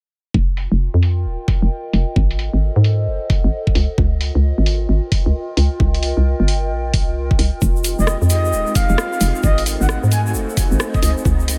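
Lightly reverberant and close, this bouncy, skippy two-step UK garage excerpt at 132 BPM swings its 16ths, with a hollow, punchy FM bass pumping beside a knocking, up-front electronic kick under a filter-swept garage kit of low-passed hats and rim click. A warbling, nostalgic lo-fi pad, dark and detuned with chorus and phaser, drifts over chords moving from Fsus2 through Ab7b9, Dbmaj7 and C7sus4 to Fm9, then back through Ab7b9 to Dbmaj7. Near 7.6 seconds a grainy egg shaker joins; a silky vintage string machine follows at 7.9 seconds and a breathy flute-like lead with vibrato and delay at 8.0 seconds.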